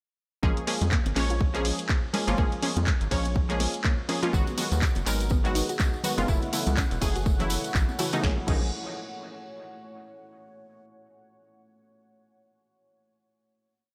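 Smooth and moody, this short deep house piece at 123 BPM swings its sixteenths in Bb phrygian, with a punchy, tape-warm electronic kick holding a four-on-the-floor pulse under a dry analog drum machine of snare, claps, hats, ride and crash, plus soft, very quiet congas and a jingly tambourine of hand-played sixteenths that joins at 4.3 seconds. A rubbery, nasal square bass rides a syncopated riff with sidechain pumping, while an up-front, muted dub chord stab moves one shape in parallel through Bbm7, Abm7 and Gbm7, treated with chorus and tape echo, and a gentle, warbling pluck loops a 12-step arpeggio that drifts against the bar in the background. A deep, dark ambient pad with a slow attack and long release arrives at 5.4 seconds, and the piece settles on a final Bbm7 chord from 8.2 seconds in light digital ambience.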